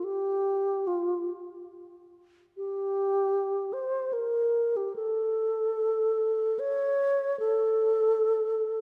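Lonely and meditative, this brief classical fragment in free time features a solo wooden-headed alto flute, pure and mellow with vibrato, crisp attacks and rolled-off highs, playing expressively up front between F4 and C#5 in a moderate concert hall reverb for 8.8 seconds.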